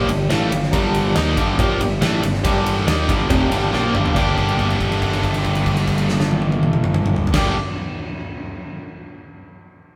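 Classic rock at 140 BPM in G minor, this brief excerpt from a longer piece has a brooding, driving mood, with the band playing live together in a large studio room that lends a moderate reverb. Up front, a cranked stack guitar carries the riff, bright and double-tracked with overdrive and spring reverb, while a huge arena drum kit pumps beside it with boomy kick, medium-tuned snare, toms, and bright cymbals. Beneath them, a fuzz fingered electric bass growls in the background, punchy and overdriven, and a gritty, reedy electric piano plays accompaniment through a combo amp with fast tremolo. The piano adds fills at the start and again from 3.3 seconds, and the drums add a fill just before the section changes at 4.2 seconds, when a held note rings until 7.3 seconds. A very quiet, dry cowbell ticks along until 4.4 seconds.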